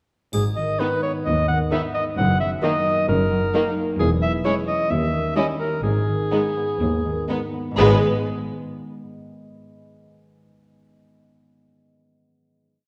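Magical and sneaky, this whimsical cinematic cue in G# minor moves at 122-132 BPM in a straight 4/4, playing as a complete short piece that settles on a final chord at 7.8 seconds. A warm cor anglais sits up front with a smooth, lightly vibrato classical solo line, while a bright concert harp rings out fingerpicked broken chords beneath it. A triangle adds close, dry strokes only at the start, and from 0.8 seconds two violin sections join, one carrying a clear bowed melody and the other sustaining after-beat chords alongside a rich, close viola section. Underneath, a focused, distant cello section supplies pizzicato and sustained bass, doubled by an intense double bass section with a smooth top. The harmony travels from G#m through D#m/F# and C#m/E to a D#7b9 before returning home. The whole piece is bathed in wet concert hall reverb and colored by a worn cassette tape character with warbly pitch drift.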